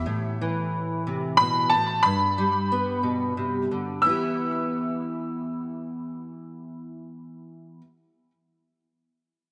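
A fingerpicked steel-string acoustic guitar opens this short folk excerpt in E minor, its warm auditorium tone colored by analog chorus as it moves through Am, G and Em in a slow, straight 6/8 at 61 BPM. At 1.4 seconds a bright upright piano takes the melody high in its register, woody and slightly detuned with long sustain and a touch of digital delay, sitting up front with a wistful, yearning quality. A lush hall reverb and bright 1980s-style digital production surround both instruments, and the music shifts into a new section at 4.0 seconds before the cut.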